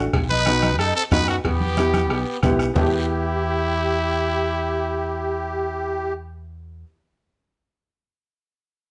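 A straight 4/4 cumbia groove at 183 BPM drives this fiery latin excerpt in E minor, built on a soft-beater bombo with a vintage, band-limited tone, damped congas with thick skins in the background, compressed, saturated cowbell and timbales, and a raspy, close guiro, with the whole percussion section dropping out at 2.8 s. Underneath throughout, a growly, punchy fingered electric bass sits up front while a woody upright piano with short sustain fills in the accompaniment, moving from B to E minor. At 0.3 s a bright, gritty trumpet takes the solo melody, up front with light vibrato and a growling pop-style bite. Beside it a reedy musette accordion in shimmering musette tuning carries a second line, both voices continuing until 6.1 s. Moderate studio reverb gives the mix a snug room sound with a slightly rolled-off top.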